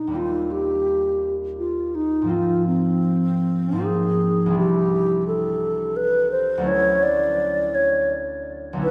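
In a rubato 3/4 at 84 BPM, this pastoral, dreamy impressionist duo unfolds as a short fragment of a longer classical piece, with an airy, hollow alto flute carrying the melody in a straight tone with a crisp attack over a fingerpicked, ringing concert harp, both placed up front. The harmony drifts through Eb6 and Ab69 before settling into D mixolydian from 4.6 s, moving from Cadd9 to Dmaj9, tuned slightly low to A4 = 439 Hz. A wet church reverb with a long 3.5-second tail surrounds the pair.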